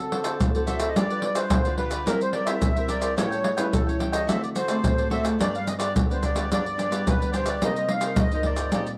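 A reedy accordion carries the melody in this brief cut from a longer samba and choro piece, its light tremolo tuning and plate reverb lending a sweet, smooth voice that sits between A4 and F5. The mood is yearning and bittersweet, moving at 108 BPM in a straight 4/4. A bright, crisp picked cavaquinho and a small, fingerpicked nylon-string guitar supply the accompaniment, the guitar reaching down to G2 for a darker bed beneath. Up front, maracas, pandeiro and a tight surdo give the percussion a vintage, band-limited character with hard hands. The harmony travels from D7 through G7, C7/G and A7 back to D7, settling on G at 5.4 seconds before turning to Cm7 at 7.6 seconds, all within a dark production and moderate studio reverb.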